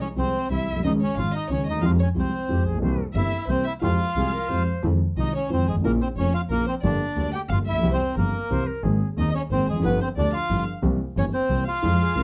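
In a rubato 3/4 at 180 BPM, this passionate, dramatic tango in F minor moves through a short cut from a longer piece, with its opening phrase returning at 4.8 s. The reedy bandoneon sits up front and carries the melody, while a single bowed violin, close and expressive, traces a second line with vibrato, portamento and a soft attack. A vintage-sounding concert grand piano, also up front, gives a mellow, smooth accompaniment with deep bass and short sustain. A lone bowed double bass anchors the low end with a clear, intense tone and light vibrato. From 2.5 s a silver concert flute adds brief, distant phrases, pure and metallic with vibrato and tongued notes, over moderate studio reverb and a dark, warm production.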